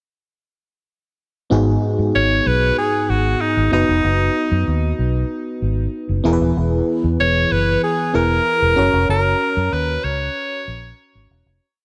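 A straight 4/4 pulse at 95 BPM carries this short, nostalgic and moody piece of 1980s-style pop, tuned slightly sharp to A4 = 441 Hz. From 1.5 seconds, a dark, round, foam-muted electric bass plays a punchy, syncopated pop-funk line with chromatic approach notes, while an FM electric piano with chorus holds close-voiced chords, its glassy, bell-like attack decaying into a warbling tone with a faint noise layer and touches of grace notes. At 2.2 seconds a bright alto saxophone enters up front, singing motif-based hook phrases in a pop style over a verse that moves through G#m7, B, E and F#. The three parts sit in a small room with light reverb and a softened top end, giving the sound a vintage, intimate feel. The whole piece fades out from 9.1 seconds to its close.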